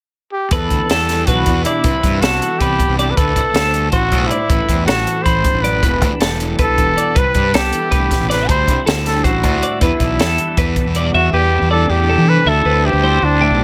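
A straight 7/8 pulse at 316 BPM in eighths drives this restless, wistful math rock and midwest emo piece in E minor, where an intimate, breathy trumpet with light vibrato carries the melody up front from 0.3 s over clean, compressed twelve-string electric guitar chords with ensemble chorus, a second twelve-string guitar picking bright, twangy arpeggios through analog delay in the background, an overdriven fuzz fingered bass, and a dry compact cocktail kit with a high-tuned snare and punchy kick that stops at 11.0 s, all set in a lightly reverberant room.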